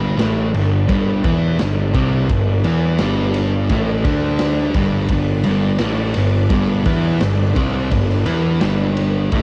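A straight 4/4 pulse drives this restless, bittersweet slice of quiet-loud alternative rock, cut from a longer piece and resting on a single G chord. A thick, dark fuzz guitar riff and a bright, growly overdriven picked bass sit up front, while a raw garage drum kit of punchy kick, snare and ride, saturated and gritty from cassette tape, enters at 0.2 s. Far beneath, a very quiet vintage string machine holds shimmering sawtooth violin chords with a soft attack and ensemble chorus, all captured as a dry home recording on cassette.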